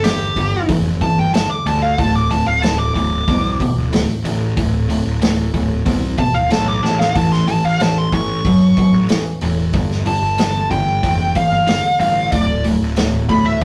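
A rough rehearsal-room recording with warm saturation and a wet small-room reverb frames this swaggering, raunchy blues rock and southern rock excerpt at 93 BPM in a straight 4/4. A dark, biting, double-tracked overdriven guitar riff and a fuzzed, overdriven picked electric bass drive the low end, while a vintage acoustic kit with a punchy kick, medium-tuned snare, hi-hat and rolled-off top pumps in its small room, breaking into a fill at 6.8 seconds. Up front, a smooth overdriven lead guitar with wah sings its melody over power-chord movement through G5, D5 and A.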